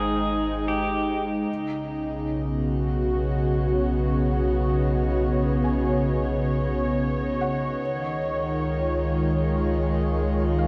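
A lush hall reverb with a long 3.1-second tail surrounds this short ambient excerpt, cut from a longer piece, giving it a warm, luminous mood at 76 BPM in a straight 4/4. A clean, compressed electric pedal steel guitar sits up front and sings a brief slide melody with volume swells and tape echo, heard only for the opening 1.2 seconds. Up front as well, a detuned sawtooth analog pad with a slow attack holds smooth, warbling, vintage-toned chords through chorus, while a round, deep sine sub bass anchors the low end. In the background, a reedy, breathing pedal harmonium drone fades in across the whole passage, and a soft, intimate felt-muted upright piano plays mellow arpeggios through tape echo as it fades out. The harmony moves from Abmaj7 to Bsus2 and settles on Dbadd9 at 7.8 seconds.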